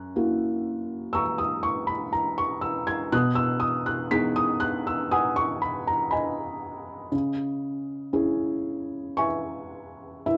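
Dark and melancholic, this lyrical classical solo piano excerpt unfolds slowly at 60 BPM in 4/4 with a rubato feel, its harmony moving from F#7 to B6 at 3.1 seconds and settling on C#m at 7.1 seconds. A felt-muted upright piano carries the whole passage alone, up front and intimate, its soft, mellow tone spanning F#2 to B6. Moderate studio reverb and a dusky production give the short fragment a close, hushed atmosphere.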